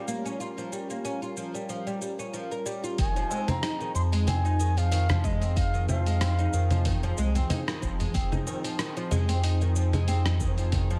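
A round, sine-toned sub bass sits up front in this organic downtempo piece, arriving at 3.0 seconds with a fast attack and a deep, sustained hum beneath a mystical, earthy mood. From the start, a bright, woody oud with double strings plucks plectrum arpeggios through delay. A soft-attack sawtooth pad holds detuned chords with chorus, a moving notch and a sidechain pump, changing from Gm7b5 to Fm7. A gritty, compressed sampler-style kit of cabasa, congas, hi-hat and rim click carries a lightly swung 16th-note groove, re-recorded in a large room. At the same point the bass enters, an electronic kick adds a produced low thump, and from 3.3 seconds a low-tuned, short-ringing tabla taps along, distant and very quiet. An airy bamboo bansuri sings a tongued, expressive melody with vibrato and delay until 7.1 seconds, and the whole excerpt sits in a digital ambience.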